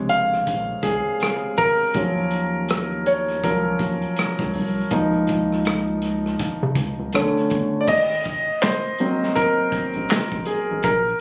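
R&B and neo-soul at 81 BPM in 4/4 with a swung sixteenth-note feel, this late-night, introspective clip from a longer piece is led by a warm, up-front concert grand piano, which plays throughout and carries the solo spotlight over chords moving from Bbm9 through Ebm9 and Db69 to Bm9, settling on Ab9 at 7.9 seconds. Underneath, a rubbery, hollow square-wave bass with a resonant filter pluck and a crunchy, gritty breakbeat kit of punchy kick, medium-tuned snare, rim click, handclaps, hi-hat and dark cymbals sit lower in the mix. The sound has the roomy feel of a phone recording made in the room, with club reverb, compression and a moderate studio reverb.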